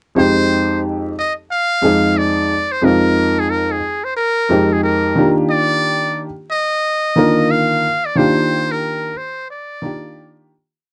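A trumpet with a metal mute carries the melody up front, its buzzy, thin tone shaded with light vibrato and soft attacks as it sings motif-based jazz phrases over a baby grand piano that pushes rootless chords between Fm7 and Ebmaj9. The piano sounds mellow, worn and a little boxy, with its action noise audible close by, and both parts play from 0.2 to 10.5 seconds before a fade-out that begins at 8.2 seconds. It is a cool, nocturnal swung hip hop piece, dark in production, with light reverb and a bed of vinyl crackle.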